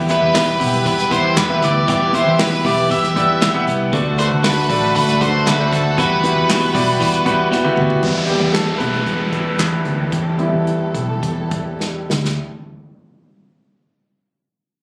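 Up front, an octave-fuzz lead guitar carries the melody with a dark, distorted tone, cutting through this earnest, bittersweet piano-driven pop cut from a longer piece, set in E minor at 117 BPM in a straight 4/4. A clear concert grand piano with deep bass, long sustain and audible action noise plays the accompaniment throughout, while a very quiet, lush string section holds soft-attack bowed chords beneath it. A clean, compressed electric guitar with subtle chorus plays a riff in the background, and a foam-muted vintage bass gives a dark, round low end alongside an acoustic kit with a punchy kick and bundle sticks. The harmony moves from Em to D to Emadd9, and at 7.5 seconds the lead guitar drops out as a drum fill leads into the next section. From 8.0 seconds the guitar riff stops, the piano takes a solo, the tempo slows, and an electronic downlifter sounds through to the end, with a final drum fill arriving at 11.8 seconds. 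The mix carries light, small-room and club reverb with compression, and sounds as if captured on a phone in the room.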